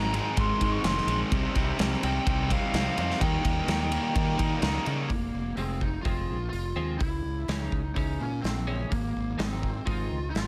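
Straight 4/4 at 126 BPM drives this dark, cathartic quiet-loud alternative rock passage in F minor, where an up-front big-room acoustic kit with a punchy kick, smooth medium-tuned snare, hi-hat and ride sits under a growly, fuzzed fingered bass and a shadowy overdriven lead guitar from a small cranked amp with digital delay, while a bright distorted fuzz guitar and a background overdriven guitar play picked riffs until 5.1 s, giving way at 5.6 s to clean, compressed twelve-string arpeggios thickened by analog chorus, all in light reverb.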